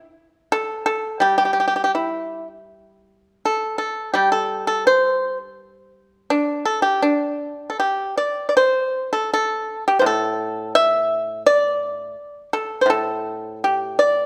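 In a rubato 2/4 feel hovering around 78-86 BPM, this flowing, serene fragment of Chinese traditional solo music features a lone pipa, bright, percussive and up front under fingerpicks, ranging from A2 to E5 between 0.5 and 14.3 seconds, its dry attack set within a moderate recital-hall reverb as the piece moves into a new section at 8.6 seconds.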